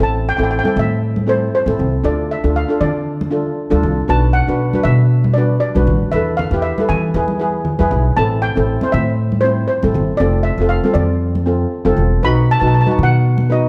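Set in a moderate recital-hall reverb, this moody, bittersweet calypso excerpt in A minor moves at 118 BPM with a light swing, as a shimmering, metallic steel pan carries the melody over a second, mellow and airy steel pan accompaniment. Up front, a woody pizzicato upright bass anchors the harmony, while ringing, soft-handed congas enter in the background at 0.7 seconds, all over chords drifting from Am through Dm, Bm and Esus4 to F and B7.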